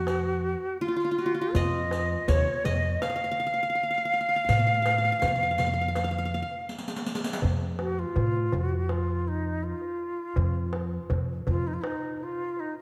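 Longing and soulful, this fragment of a longer Arabic maqam ensemble piece moves at 82 BPM in a straight 4/4, set in F maqam hijaz with a tuning of A4 = 438 Hz. An airy, end-blown ney carries the melody up front, its reed-cane tone expressive with vibrato and tongued notes. Beneath it a bright-edged qanun, played with fingerpicks on triple strings, adds a second line, while a woody pizzicato upright bass on steel strings anchors the low end. A clay-shell darbuka with natural skin gives a soft-handed, vintage, band-limited pulse, joined by a riq whose dark jingles sit distant in a large room. After a drum fill at 6.7 s, the qanun and riq fall away near 7.4 s for a second section where ney, bass and darbuka continue until the bass stops at 11.8 s. A moderate scoring-stage reverb surrounds the ensemble.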